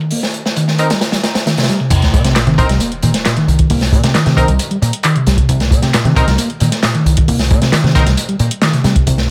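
A straight 134 BPM breakbeat groove in C minor drives this swaggering, funky excerpt, with a gritty, saturated acoustic kit up front and an analog drum machine's handclaps and hi-hat beneath, while a mellow, reedy electric piano riff with digital delay sits on a Cm7 from the start, nasal, band-passed sawtooth chord stabs with chorus and tape colour cut in from 0.8 s, and at 1.9 s the drop arrives as an overdriven, round, foam-muted picked bass enters alongside a sub drop in the background.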